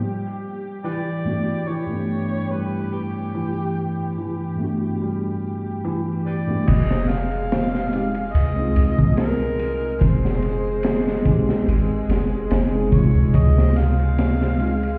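An overdriven, gritty harmonica carries the melody from 0.8 seconds with tape echo, scooped notes and tongue slaps, floating over dark, sul tasto strings and a worn, slightly out-of-tune tine electric piano with tremolo in this hypnotic trip hop excerpt at 72 BPM. A muted felt upright piano plays arpeggios through a filter sweep, sampler grit and tape echo until 6.7 seconds, when a round, deep 808-style bass and a crunchy, saturated breakbeat kit with a high-tuned snare enter under the chords moving from Gmaj7 to Fm7 and Dbmaj7. The whole mix sounds muffled as if heard through a wall, set in stone room reverb with vinyl crackle.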